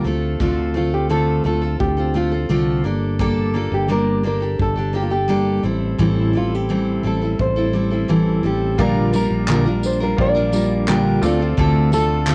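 A full-bodied, jumbo steel-string acoustic guitar sits up front in this reflective, tender acoustic pop excerpt, picked from the opening moment alongside a fretless electric bass with a direct, close-up sound. A soft brush drum kit comes in at 0.4 seconds, distant and roomy with a punchy kick and a rolled-off top, adding handclaps and tambourine, all colored by cassette tape. At 0.8 seconds a small, dark nylon-string guitar takes the melody, fingerpicked on fresh strings with audible finger squeak and treated with cassette tape and plate reverb. The harmony moves through Dm7, Gmadd9 and Am7 before shifting at 8.8 seconds to Bb6 and back to Dm7. At that shift a bright, slightly detuned upright piano enters in the background, woody and worn, with audible action noise and a touch of plate reverb. The excerpt has the modest, homemade character of a cassette recording made in a booth with moderate ambience.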